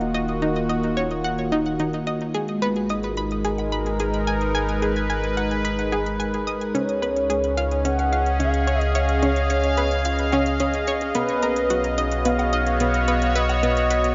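Cosmic and expansive, this excerpt of sequencer-driven ambient space music moves at 109 BPM in a straight 4/4, drifting through Ebm, Abm, Db and B. An up-front, bright, detuned sawtooth pad with a slow attack and long release sits over a deep sine sub bass, while a round analog pluck plays a chorused, delayed riff and faint, metallic electronic hi-hat and woodblock fade in through echoes. At 6.8 seconds a smooth, expressive synth lead with vibrato and lush chorus takes up the melody, and the whole mix floats in a vast, soaking reverb with a softened top end.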